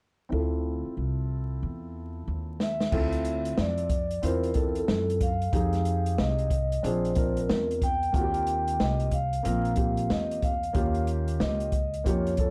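A dark, mellow grand piano and a woody, thumpy upright bass open this cool, nocturnal jazz-hop excerpt together at 0.3 seconds, with a filter sweep shaping the muffled piano chords over a D minor ninth. The plucked gut-string bass sits up front with a gritty saturated edge, while the piano stays low-passed and rich in deep bass. At 2.6 seconds an acoustic kit recorded in a small room enters in the middle of a drum fill, with dark cymbals, a medium-tuned snare and a boomy kick, and at the same moment a soft-mallet vibraphone takes the melody with a metallic, ringing tone and an analog delay trailing each note. The groove moves at 92 BPM in 4/4 with a lazy 16th-note swing, and the harmony drifts through Fm7, Bb7, Eb6 and Eb9 in the second section. The whole recording is dry and close, with a lo-fi hardware grit and a layer of vinyl crackle underneath.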